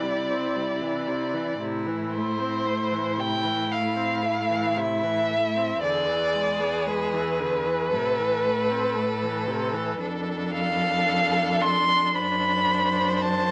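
Classical slow romantic string quartet movement, tender and rubato, in which a rich, expressive first violin sings the melody up front with vibrato and portamento over a focused second violin line, clear viola accompaniment and a close cello bass, each bowed by a single player in moderate studio reverb across this 13.5-second fragment.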